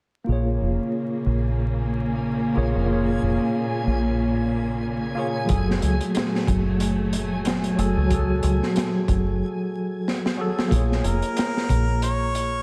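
Hypnotic and cinematic, this trip hop excerpt moves at 92 BPM in Bb minor with a swung sixteenth-note feel, its dreamy mix soaked in lush hall reverb and vinyl crackle. A tine electric piano carries the accompaniment through harmonic tremolo, tape echo and 12-bit sampler grit, while a bowed symphonic string section holds soft-attacked, vibrato-rich chords that also carry sampler grit. A deep, round, foam-muted fingered bass sits up front, and a faint reversed, detuned granular texture swells on a single high Ab with its own chorus and reverb. The crunchy breakbeat kit arrives at 5.5 seconds, saturated and dark with a punchy kick and rolled-off top, as the harmony shifts from Bbm7 to Gbmadd9. After a break at 9.4 seconds and a drum fill, a bright, punchy harmonica with light vibrato and tape echo takes the melody at 11.1 seconds over a return to Bbm7.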